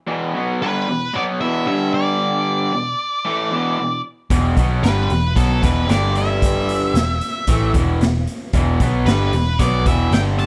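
At 113 BPM in a straight 4/4, this smoky, brooding blues rock and southern rock excerpt in E minor opens with a bright, double-tracked overdriven garage guitar riff, joined at 0.6 seconds by a dark octave-fuzz lead melody with slapback echo, before a round, foam-muted picked bass and a punchy, saturated drum kit with a pumping stone-room sound enter together at 4.3 seconds, all in a dry mix that moves between Em and G5.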